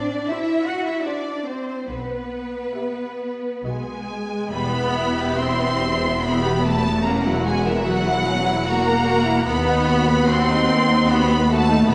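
A clear, intense violin section carries the melody in this serene excerpt from a slow, romantic string orchestra movement in 3/4 at 64-82 BPM with a rubato feel, while smooth second violins, focused violas entering at 0.3 s, and rich cellos and double basses fill out a lush, warm texture that shifts into a new section at 4.5 s, all set in a wet, reverberant scoring-stage space.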